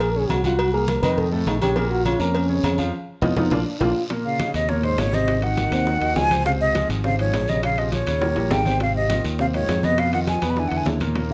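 Afro-Cuban jazz at a driving, fiery 204 BPM in Eb dorian, this excerpt opens with a dark, bucket-muted trombone solo, veiled and growling with scooped notes. It is backed by a warm concert grand piano, a bright, growly fingered electric bass up front, and a percussion bed of ringing agogo bells and timbales, damped low-tuned congas, very quiet cowbell and bongos, and raspy guiro. A band accent and drum fill close the opening section near 4.1 seconds, and at 4.3 seconds a breathy, mellow silver flute takes the melody with vibrato and a crisp attack, all within a moderate large studio reverb.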